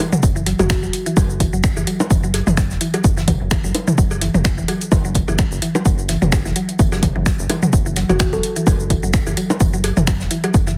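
Hypnotic and clinical, this minimal techno excerpt in F# minor runs at 128 BPM with a light 16th-note swing, built on an up-front, punchy overdriven electronic kick, a booming analog drum machine with metallic hats, finger snaps and shaker, tape-warm electronic cowbell, bongos and toms, a very quiet brush kit with tambourine, a rubbery, nasal square bass and a woody, bright mallet-like synth pluck riff with chorus, sidechain pumping and dub echo, while a mellow kalimba with delay appears briefly at 0.6 and 8.1 seconds, all inside a heavily compressed, radio-like ambience.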